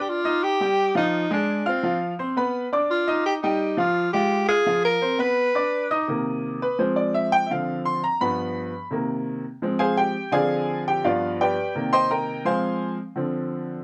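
This Latin excerpt moves at a driving, danceable 169 BPM in a straight 4/4. A tenor saxophone carries the melody from the start, its tone warm and roomy with a touch of vibrato and a pop-style delivery that sits up front in the mix. Beneath it, a clear, woody upright piano supplies the accompaniment across a broad span of the keyboard, moving through chords such as Ebadd9, Fm and Bdim. The saxophone drops out at 5.9 seconds, and from 6.1 seconds the piano takes a solo over a progression built on Cm7, Fm, Dm7 and G7. Light reverb and close, detailed microphones lend the recording a clear, detailed sound.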